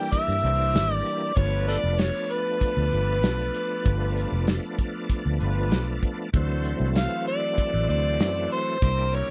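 Swaggering and gritty, this short excerpt of straight-eighth soul blues moves at 97 BPM in G mixolydian, cut from a longer piece. An amplified, overdriven harmonica carries the melody up front, its light vibrato, tongue slaps and scooped notes giving the jazz-style solo a raw edge. Behind it, a bright tonewheel organ shouts its accompaniment through light overdrive, chorus vibrato and a slow rotary speaker, with audible key click. The dry soul drum kit sits close, pairing a tight kick with a medium-tuned snare, hi-hat and tambourine under a rolled-off top, while a dark, foam-muted fingered electric bass adds a round, amped low end. A smooth horn section holds sustained chords in the background, and the harmony moves from C7 to G7 at 1.4 seconds and on to D7 at 6.3 seconds in this close, 1970s-style studio sound with little reverb.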